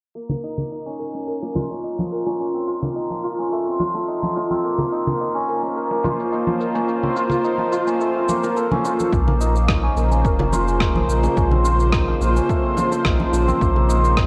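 Earthy and hypnotic, this organic downtempo excerpt at 107 BPM in Bb harmonic minor opens on a Bbmadd9 chord with shimmering, ringing santur arpeggios up front under a low-pass filter sweep and tape echo, set over gritty overdriven electronic shaker and rim click and small-room congas and bongos, before a tense, detuned, string-like drone with vibrato enters at 5.4 s and a round sine sub bass and punchy overdriven electronic kick arrive at 9.1 s, all wrapped in a lush hall and a worn, warbly cassette tone.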